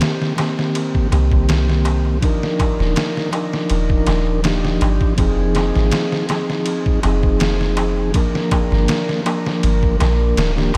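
Hypnotic and brooding, this trip hop excerpt drifts along with a gentle swing over a dusky progression of Cm7, Ebmaj9, Fm7 and Gm7. Up front, a mellow tonewheel organ carries the harmony with flute-like tone and a hint of key click, turning slowly through a rotary speaker with harmonic tremolo and tape echo. A gritty, pitched-down sampler-style kit sits beside it, its thumpy kick, medium-tuned snare and ride cymbal compressed and tape-warm in a small room. A deep metal-shell darbuka adds crisp, saturated accents low in the blend. At 1.1 seconds a soft, round 808-style bass arrives, its dark sine tone striking quickly and then decaying, while a huge ambient reverb soaks the whole mix in a dreamy haze.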